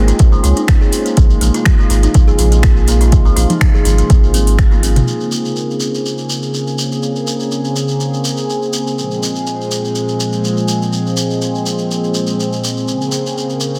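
An earthy, driving afro house excerpt in Bb minor at 123 BPM opens on a smooth, detuned sawtooth pad with chorus and sidechain pumping, a woody kalimba with ringing arpeggios through digital delay, a round, dark analog bass, an afro-pop drum kit of finger snaps, metallic hats and toms, a grainy shekere, and an overdriven, up-front electronic kick. A drum fill begins at 4.6 seconds, and the kick, bass, kalimba and kit all drop out by 5.1 seconds, leaving the pumping pad and saturated shekere to carry the Bbm9 and Fm/Bb chords until 13.8 seconds. The mix sits in light reverb under a dense, heavily limited master.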